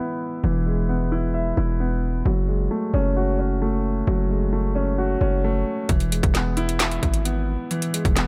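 A hard-hitting 808-style bass sits up front in this short, melancholic trap excerpt, its punchy, heavy sine tone carrying a noise layer with a fast attack and a decaying tail in the low E1 to G#1 register. It enters at 0.4 seconds beneath a dark baby grand piano that opens the track at 0.0 seconds, playing mellow, smooth, vintage-toned accompaniment with long sustain between E3 and E5 through a low-pass filter, with a filter sweep running on the piano until 5.9 seconds. The harmony moves from E to F#madd9 and back to E, at 132 BPM in 4/4 with a half-time feel and tuning set to A4 = 442 Hz. At 5.9 seconds an electronic, produced trap drum kit arrives up front, bringing a hard-clipped kick, a woody snare, metallic hi-hats and handclaps with a tape-warm character. A small room ambience surrounds the parts, and the clip breaks off at 8.3 seconds, cut from a longer piece.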